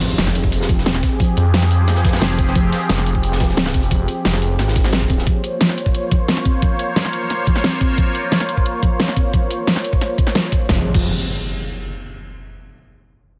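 A straight 4/4 pulse at 177 BPM drives this aggressive, tense slice of dark technical drum and bass: a knocking electronic kick sits up front beside a dubstep kit's huge snare, bright hats and crash, while a gritty, saturated breakbeat kit stays in the background until 5.3 seconds. A swirling, thick phased saw bass with tube saturation anchors the low end. Above it, an airy, evolving pad holds sustained chords moving from Fmadd9 to Bbm, and a soft, round pluck plays dark arpeggios with chorus, dub echo and a filter sweep, with both synths pumping. Electronic impacts land at the start and again at 10.7 seconds, where the harmony gives way, all within a dense, heavily limited master with light reverb.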